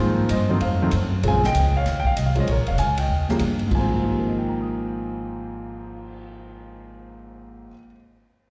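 An intimate concert grand piano carries the melody up front in this swinging jazz piano trio, its audible action noise, deep bass and long sustain framed by plate reverb and a slapback echo. The tune moves at a brisk 193 BPM in 4/4 with a swung eighth-note feel in Ab major, passing through Ab6/9, F, Bbm7, Dbmaj9 and Eb before settling back on Ab6/9. A woody, thumpy pizzicato upright bass with gut strings sits close beside the piano, while a big-band drum kit with dark cymbals, a medium-tuned snare and a punchy kick enters at 0.3 seconds, sounding airy and polished further back. The drums drop out at 6.1 seconds and the bass stops at 7.7 seconds, leaving the piano alone to finish. The trio sounds like a live gig heard through the venue's PA in a moderately reverberant club, and the mood is warm and swinging in this passage cut from a longer piece.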